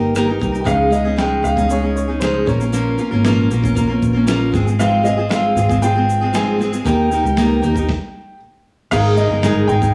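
Heard from further back in a small room and bathed in a moderate plate reverb, this short acoustic pop excerpt moves at a relaxed 116 BPM in a heartfelt, carefree mood, with chords drifting from Eb through Dbadd9, Bbm and Fm/Ab before settling on Absus2. A full-bodied, up-front fingerpicked dreadnought guitar carries the accompaniment, while a dark, woody upright piano with audible action noise and long sustain sings the melody, and a round, punchy foam-muted electric bass holds the low end. A gritty, overdriven sampler-style kit with a thumpy kick, rim click and shaker joins at 0.2 seconds, and the band pauses at 7.9 seconds before a new section begins at 8.9 seconds.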